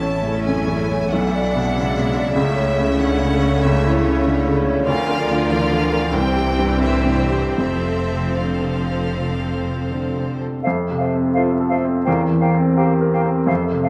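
Romantic classical music for piano and orchestra, this lush, passionate passage moves in a rubato 4/4 at roughly 75-99 BPM, starting in A major before turning to F major at 4.9 s. A clear, intimate baby grand piano carries the melody throughout, sitting up front with long sustain and audible action noise. Until about 10.4 s, the strings surround it: an intense, bowed chamber violin section sings a melody above a smooth, rich second violin line in the background, while a symphonic viola section adds vibrato-laden accompaniment and a close, expressive double bass section anchors the low end alongside a very quiet, distant cello section. At 10.6 s the texture shifts to winds and brass, with a pure, straight-toned flute and a clear clarinet sharing a second line, a roomy solo bassoon in accompaniment, and a French horn section holding sustained chords through a C7/E harmony at 12.1 s. The whole is bathed in a wet scoring-stage reverb that gives the ensemble a spacious glow.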